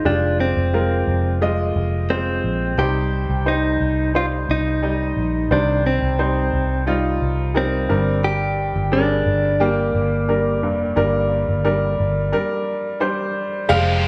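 A clean, compressed electric guitar carries the earnest, bittersweet pop melody through a tape echo over a bright, woody upright piano and a round, punchy muted bass, moving from Fm to Cm and Gm in a concert-hall space, until a break at 12.3 seconds gives way at 13.7 seconds to a biting, double-tracked overdriven guitar riff and lush bowed strings in the background as this excerpt ends.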